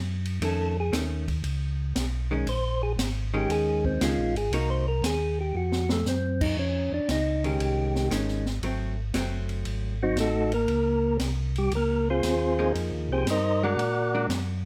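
Late-night and smoky, this soul jazz organ trio excerpt swings at 117 BPM in 4/4, with a round, clean tonewheel organ carrying the bass line through a slow rotary speaker, up front in the mix with audible key click. A mellow, percussive tonewheel organ with third harmonic percussion and plate reverb takes a solo across the whole passage, while a dark, compressed hollow-body electric guitar adds picked accompaniment over changes such as F7b13, Dbmaj9#11 and Fm11. An acoustic drum kit in a small room, with dusky cymbals, a high-tuned snare and a boomy kick, sits lowest in the mix and plays a fill from 5.5 to 6.1 seconds.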